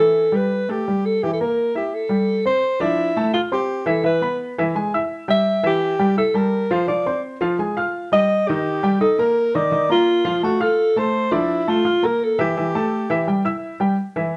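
A dark alto saxophone with light vibrato carries the melody over an intimate baby grand piano from the start, a sultry, sophisticated jazz passage in D minor at a brisk 169 BPM in straight 4/4. The piano's short sustain and audible action noise sit up front, while moderate studio reverb gives the horn a roomy sheen as the harmony moves from Dm7 through Fm9 and Bbmaj7 before settling on A5. The saxophone drops out at 13.6 seconds, and the piano plays on alone until 14.4 seconds, where this fragment of a longer piece is cut off.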